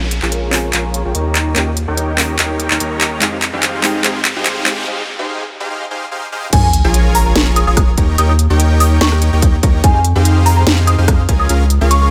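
A light reverb and a high-pass filter shape this lush, emotional future bass excerpt, set at 145 BPM in a half-time 4/4 feel in Bb dorian. The build-up opens with a huge, detuned supersaw riff swept by a low-pass filter, pumping with the sidechain and trailing tape echo. Beneath it, a soft, round pluck with analog chorus sits dark in the background until 4.9 seconds, while a very quiet riser and sub drop add tension. An up-front trap kit with a sharp snare, crisp hats, handclaps, rim clicks and crash cymbal plays a fill before a short break, and a deep, saturated sine sub bass pumps throughout under chords moving from Bbm7 through Eb7 and Fm9. At the drop at 6.5 seconds an impact hits as a hard-clipped electronic kick and a woody folk marimba melody with dub echo enter, its dry, rustic tone carrying the tune over a closing Db6 chord.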